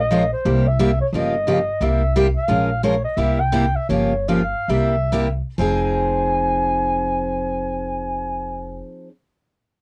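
Swinging eighths in 4/4 carry this virtuosic acoustic string swing piece in F minor at 124-177 BPM, where a breathy, whispered subtone clarinet with vibrato and scooped notes sings the melody over a woody, thumpy pizzicato upright bass and a bright, full-bodied picked steel-string guitar, both clarinet and guitar colored by cassette tape, as the harmony circles C7, Gm7b5 and Bbm7 while the tempo slows from 2.5 s until it settles on Fm7 at 5.6 s, all captured as an intimate home cassette recording in a snug booth.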